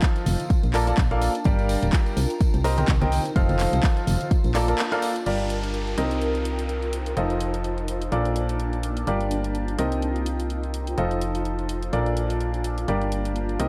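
Bittersweet and soulful, this swung piano house clip at 126 BPM in G minor sets a clear, worn grand piano riff with sidechain pumping and dub echo over a round, punchy FM bass, a cloudy, detuned granular pad, overdriven house drums with bright hats, handclaps and crash, and distant tambourine and congas, while the up-front overdriven kick drops out at 4.4 seconds, a band accent opens a short break at 4.8 seconds, and an electronic downlifter enters at 5.3 seconds as the Gm7, Cm7, F7 and Bbmaj7 progression keeps cycling.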